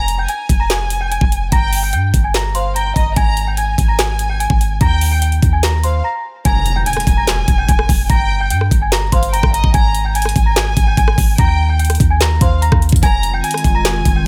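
A knocking trap drum kit with a woody snare and metallic hats drives this eerie, dark half-time hip hop excerpt at 146 BPM, under a deep, boomy 808-style bass, a delicate bell-like celesta melody through low-pass filter and digital delay, a shadowy bowed chamber violin section with vibrato, an electronic impact at 6.5 seconds after a short break, and a warbling, lo-fi tape-like pad that enters at 13.2 seconds over a dry mix moving from Fm through Gm, Absus2 and Eb5.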